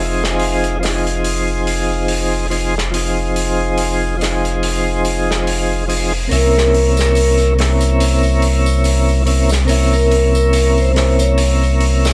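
A smooth tonewheel organ turning through a slow rotary speaker with tremolo and tape echo opens this dark, melancholic trip hop excerpt over a deep, round dub sub bass, a loose indie drum kit with a rolled-off top and pumping room joins on swung hi-hat and snare at 0.2 s, and at 6.3 s a metallic, ringing vibraphone with medium hard mallets carries the melody in the background with tape echo as a faint tambourine enters and the chords shift from Fm7 to C7b9, the whole mix wrapped in vinyl crackle and light small-room reverb.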